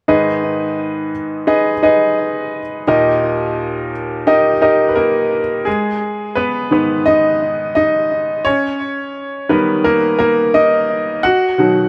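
Pop in G# minor at 86 BPM, this dramatic, driving solo piece for bright upright piano is cut from a longer work and moves between G#m and D# before touching B near its close. The upright sits up front with a woody, intimate tone and audible action noise, its digital delay trailing the notes into a moderate plate reverb. The piano plays throughout from 0.1 to 11.9 seconds, with a solo passage taking over from 5.7 seconds.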